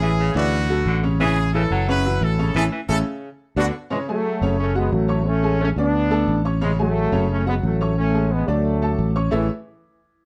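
Latin in A major at 177 BPM, this sunny, festive excerpt opens with a tight, brilliant horn section carrying the melody over a clear, vintage-toned baritone saxophone second line with vibrato, and a band accent lands at 2.6 seconds. At 3.9 seconds a smooth-topped, loose trombone section takes over the melody, bathed in plate reverb. Throughout, a woody, open upright piano and a round, punchy fingered electric bass move between chords built on A, D and F#m in a dark, lightly reverberant production.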